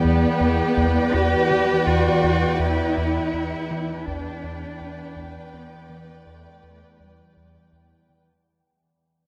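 In a slow three-beat sway, this ominous, uneasy suspense film score excerpt sets bowed chamber strings over a single Em7 chord in a vast cathedral echo, with smooth violins carrying the melody against a rich, close second violin line, a background viola accompaniment, up-front cellos sliding expressively, distant double basses, a rubbery, nasal square-wave bass riff, a very quiet drone of moving overtones, and a very quiet taiko ensemble on heavy sticks from 0.8 to 5.5 seconds, the whole fading out from the start.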